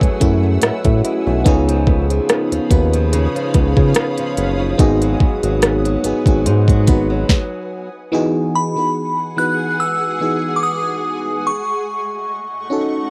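Cut from a longer piece and captured as a home cassette recording with light reverb, this moody, sensual contemporary R&B moves at 72 BPM in 4/4 with a lightly swung sixteenth feel over chords from F#m9 through C#9 and G#m7. An overdriven trap kit with a knocking kick, sharp snare and crisp hats sits up front beside a round, nasal analog bass, while a full-bodied FM electric piano with chorus, a fingerpicked flamenco guitar through tape echo, a cloudy, evolving granular pad and a barely audible downlifter fill out the opening. A stop falls at 7.3 seconds, and from 8.6 seconds a crystalline, warbling synth bell carries the melody over Emaj9 and D#m7b5, with the piano and pad continuing beneath it.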